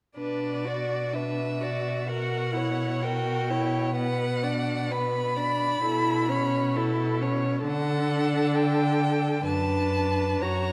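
A string quartet enters together at 0.2 s, opening a slow, melancholic movement in the romantic style that sounds cut from a longer piece. The first violin carries a yearning melody high in its range, bowed with vibrato, soft attacks and expressive portamento, while the second violin shapes a gentle second line just beneath it with the same singing, gliding manner. The viola supplies a focused, bowed accompaniment in the middle register, and the cello sits up front on the bass line with a smooth, full-bodied top. The pulse breathes freely in rubato as the harmony moves from B minor through chords over B in the bass before settling on D and a B minor close over F#. A dark, warm production and the lingering reverb of a scoring stage wrap the four players in a lush, resonant space until they stop at 10.7 s.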